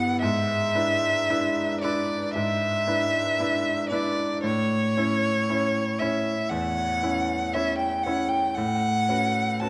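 A bowed violin sings a rich, expressive melody with vibrato and portamento over the clear, intimate accompaniment of a baby grand piano, its action noise audible, both parts up front in this serene, tender romantic classical duo at a rubato 58 BPM in 4/4, moving from E7/G# to A and settling on A69 by 8.6 seconds within the dark production and the long, wet reverb of a scoring stage.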